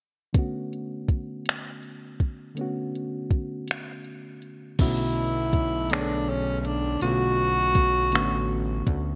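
Bathed in a lush hall reverb with a bright 1980s-style digital sheen, this slow, yearning six-eight R&B piece in B minor moves at 54 BPM over a Bm9 chord. A reedy, clean electric piano and a produced electronic kit of soft kick, metallic hi-hat, finger snaps and crash with gated reverb open the passage from 0.3 seconds. At 4.8 seconds a close-miked, breathy tenor saxophone steps up front for a sultry jazz-style solo with scooped notes, joined by a fat, detuned sawtooth analog bass with a saturated filter pluck.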